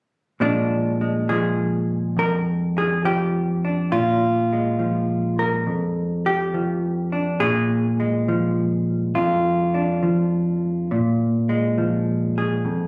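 Swung eighths loosened by rubato at a slow 69 BPM in 4/4 carry this relaxed, sophisticated solo jazz excerpt in Bb mixolydian, where a lone clean, dark, fingered hollow-body electric jazz guitar sits up front over a Bb7 harmony from 0.4 to 12.9 seconds, tuned to A4 = 436 Hz and captured on a phone in the room with light studio reverb and compression.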